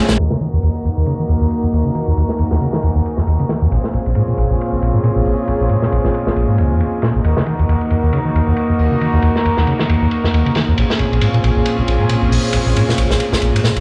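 A crunchy, swung breakbeat drives this raw, funky breaks excerpt, its hi-hat, ride cymbal and medium-tuned snare sounding saturated and gritty with dark cymbals and a rolled-off top. Up front, a screaming acid riff from 0.1 seconds carries the energy: a squelchy, resonant sawtooth line with a fast attack, distortion, subtle chorus and a filter sweep running through it. Beneath it, reedy, gut-string stabs from a period-style bowed string section arrive with 12-bit sampler grit, a low-pass filter and dub echo trailing behind them. A deep, moody analog pad holds sustained chords throughout, blending detuned square, sawtooth and triangle waves with a sub octave, a moving notch and chorus. The whole track sounds as if played on a big sound system in a bare stone room, with vinyl crackle and a low-pass filter adding to its dusty, brooding character.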